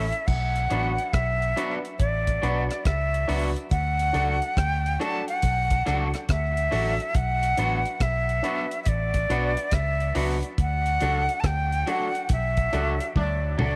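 A small room and a light reverb give this laid-back, sunny roots reggae excerpt a close, intimate sound. It moves at 70 BPM in 4/4 with a swung sixteenth-note feel, over a Bm chord that shifts to D at 10.6 seconds. A breathy, bright jazz flute carries the melody up front, close-miked and expressive with a soft attack and vibrato, its notes trailing a dub echo. Beneath it, an electric guitar at the edge of break-up adds twangy picked accompaniment with its own dub echo, while a grand piano places warm stabs in the middle register. A dark, round, foam-muted fingered bass and a deep, dry drum kit with a tight kick, rim clicks, hi-hat, toms and crash sit up front, with the band accenting together from 10.6 seconds and the drums playing a fill near the end. At 12.7 seconds a nasal, straight-muted trombone section slips in with a tight, punchy second line, also echoed, just as the piece is cut off.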